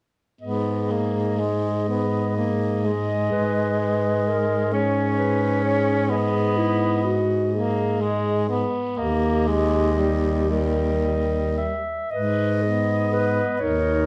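A solemn, melancholic classical piece for single-reed quartet opens at 0.4 seconds with all four voices sounding together in G# minor, a slow, rubato 6/8 moving at roughly 36-44 BPM in dotted quarters. A clear clarinet carries the lyrical melody in its middle register, while a second clarinet, warm and distant in the room, sings a supporting line beneath it. The tenor saxophone supplies up-front accompaniment with a vintage, vibrato-tinged tone, and the close-miked baritone saxophone anchors the bass, its vibrato giving the low notes a gentle pulse. The harmony rests on G# minor before shifting to D# at 9.0 seconds and returning home to G# minor as a new section begins at 12.1 seconds. A moderate recital-hall reverb surrounds the ensemble, and the passage, cut from a longer work, ends at 14.1 seconds.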